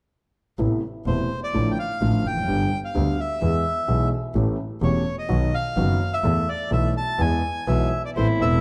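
A warm concert grand piano with audible action noise and a clear, bowed double bass open this tense, passionate A minor tango excerpt at 127 BPM with a rubato feel, joined at 1.1 s by a reedy, boxy bandoneon carrying the melody up front, before a rich, biting cello adds a second line at 8.2 s, set in light reverb with a dark production.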